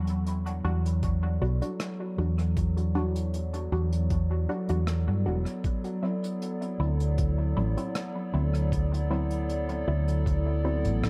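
Spacious and hazy, this ambient dub fragment drifts at 78 BPM in E minor with a light 16th-note swing, moving from Em9 to D9 at 5.6 s. A warbling, detuned, nostalgic pad with chorus sustains chords beneath muted, sawtooth-edged chord stabs that carry a filter sweep, phaser and dub echo. A round, dark hollow-body electric bass sits up front with tube saturation, while a soft brush kit of hi-hat and rim click, treated with dub echo, is joined by a muffled, thumpy, pitched-down kick from 1.0 s in an echo-heavy mix.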